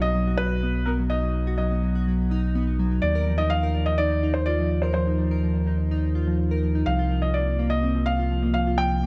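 A straight 4/4 pulse at 125 BPM drives this playful, intricate IDM excerpt, where a deep, sustained round analog bass anchors the low end beneath ringing, harp-like synth pluck arpeggios given shimmer by chorus and digital delay, while an intimate, mellow felt-muted upright piano carries the melody through tape echo, all set in a dark production with light reverb as the chords move from B to Ebsus2 at 3.0 s and Csus4 at 6.9 s.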